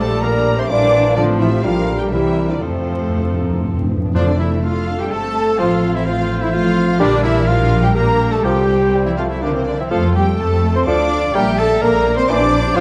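A lush, vibrato-rich violin section carries the graceful, spirited melody of this quick classical-period symphonic movement in F major at 125 BPM in a rubato 3/4, over distant clarinet, background cor anglais, a very quiet hollow flute ensemble and softly bowed second violins on the second lines, focused violas and a warm bassoon in accompaniment, sustained mellow French horn chords, and an intense cello section and up-front double basses on the bass, while hard-mallet timpani punch in with a fill at 2.6 seconds and a clear, roomy trumpet adds stabs from 4.1 seconds, all set in a recital-hall reverb with vinyl crackle.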